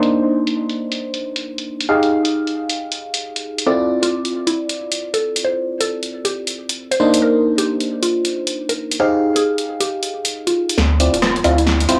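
Late-night and moody, this 12-second cut from a longer two-step UK garage track swings at 135 BPM in D phrygian. It pairs glassy, bell-like FM electric piano stabs colored by chorus and tape echo with punchy, tape-warm analog drum machine bongos, hi-hat, rim click and snare, and a woody, dark mallet-like synth pluck melody that enters at 3.7 seconds through chorus, phaser and echo. At 10.8 seconds a build-up brings a drum fill, a filter sweep on the piano and a deep, round dub sub bass, joined at 11.2 seconds by a very quiet riser, all inside a small room and a dry, gritty hardware sound with transformer saturation.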